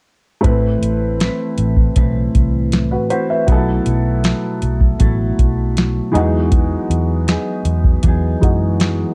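An overdriven vintage rhythm box with a deep kick, crisp snare and metallic hats sits up front in this laid-back, sunny bedroom-pop and indie-pop fragment at 79 BPM, alongside a round, foam-muted fingered bass, a dark, compressed electric guitar with subtle chorus and warbly pitch drift, and an intimate, woody upright piano with audible action noise and slight detuning, as the harmony moves through Amadd9, B7sus4 and Emaj9 within a light reverb and cassette-tape sound.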